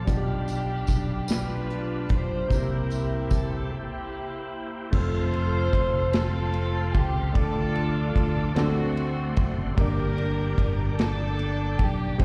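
This slow gospel excerpt sounds like a live gig heard through a venue's PA, caught in a small room yet carrying a recital hall's reverb. Soulful and hopeful, it moves at 50 BPM in a straight 6/8 in F major. A floating, distant string section carries the melody with soft-attack, sul tasto bowing and a slapback echo, while a clear, intimate baby grand piano sits in the background with audible action noise and its own slapback echo. A clean tonewheel organ holds sustained chords through a fast rotary speaker and chorus vibrato, its key click showing through, as a fingered electric bass sits up front with a direct, amped tone. The acoustic drum kit is dark and smooth, with a tight kick, a medium-tuned snare and a rolled-off top, and a jingly, vintage tambourine joins it until 3.7 s, followed by a break up to 4.9 s, after which the harmony settles on F and moves through Dm and D7 to Gm.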